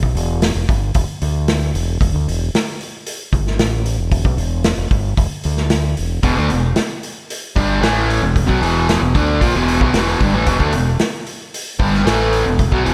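A growling, overdriven fingered electric bass and a punchy vintage drum kit with a pumping small-room sound and rolled-off top open this sunny, confident classic rock excerpt at 113 BPM, circling E5 power chords, before a double-tracked overdriven electric guitar riff with spring reverb arrives up front at 6.2 seconds.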